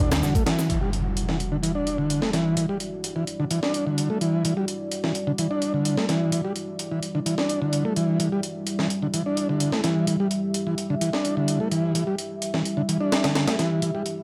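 Gritty and swaggering, this short cut of a longer breakbeat track rides a straight 128 BPM in E minor over a single Em9 chord, set in a small room with moderate reverb. A vintage combo organ carries the riff up front, mellow and clean with heavy vibrato, a low-pass filter and tape echo, while a deep, moody pad of detuned sawtooth and sine with a sub octave sustains dark, warbling chords through chorus and sidechain pumping. A compressed, pitched-up sampler-style kit with a thumpy kick and high-tuned snare drives up front with tape-warm grit, an overdriven analog shaker sounds briefly in the background until 0.7 seconds, and an electronic impact hits from 0.7 to 2.6 seconds.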